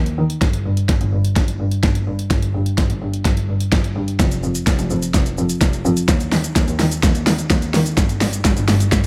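A straight 4/4 pulse drives this summery, euphoric dance-pop excerpt, which is one long build-up and drum fill from start to finish. A single bowed double bass, focused and clear with vibrato, pumps against the sidechain from the opening. From 0.1 s, an overdriven, layered electronic pop kit joins with a knocking kick, fat gated-reverb snare, warm hi-hat and shaker, all set in a dry, bright 1980s-style digital production.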